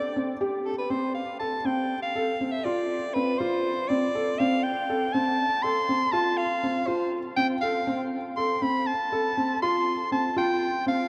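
A soprano saxophone with vibrato, scooped notes and a smooth top carries a pensive, restless, jazz-style solo melody over soft, intimate felt-muted upright piano arpeggios with audible action noise, in this contemporary instrumental excerpt at 241 BPM in eighths and 7/8, moving through F, Dm7 and Fsus2 as a 6.8-second cathedral reverb sets both up-front parts in a vast, echoing space.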